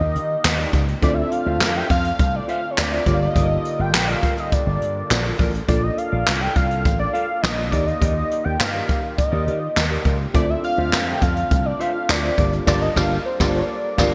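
A fat, detuned sawtooth lead with vibrato sings the melody over growly, punchy slap bass through an envelope filter, a worn, slightly out-of-tune tine electric piano, a very quiet warbling analog pad and a mellow, chorus-soaked guitar riff in the background, while a brushed jazz kit with a boomy kick, dark cymbals, handclaps and gated reverb joins at 0.2 seconds in this slick, late-night early-eighties boogie funk excerpt, bathed in bright digital hall reverb until the band strikes an accent at 12.7 seconds.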